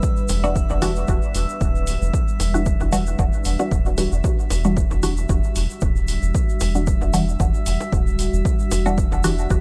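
A punchy, up-front analog kick anchors this nocturnal, hazy dub techno cut in E minor at 114 BPM, where a muted, phaser-tinged chord stab with 12-bit grit and dub echo pumps over a round, soft, tube-saturated sub bass and a moody Em9 pad, joined by a glassy E5 texture with drifting overtones, a grainy egg shaker, a small-room hi-hat and very quiet layered bongos and congas, all in a dry, gritty recording.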